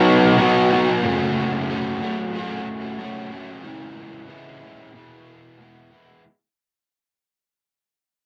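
Light reverb and the soft grain of a home cassette recording frame this brief rock fragment, which fades out across its whole 6.2 seconds as if pulled from a longer piece. A lone electric guitar carries everything, crunchy and overdriven, picked and double-tracked, sitting up front with a subtle chorus and a tape-worn sheen. Moving at 92 BPM in a straight 4/4 in E major, tuned slightly sharp at A4 = 441 Hz, it ranges from E2 up to F#4. The harmony drifts from B to F#m, then C#m, settling on E at 4.9 seconds. The mood is wistful and dreamy, a hazy, intimate snapshot of a guitarist alone with an idea.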